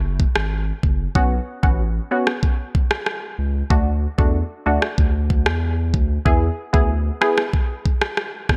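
The saturated sub bass opens this short dancehall cut at 94 BPM in a straight 4/4, a deep, thick sine tone with a fast attack that sustains up front from the very start. An electronic island pop drum kit joins at 0.2 seconds with a knocking kick and rim click, dressed in gated reverb. At 1.2 seconds a digital wavetable chord stab comes in, crisp yet mellow, with detuned unison voices, a filter pluck and a fast, decaying attack, treated with lush chorus and sidechain pumping. The stab moves from Bsus2 to D to E before dropping out at 7.4 seconds, while bass and drums carry on to the end. The mood is hypnotic and bouncy, set in light reverb with a bright 1980s-style digital sheen.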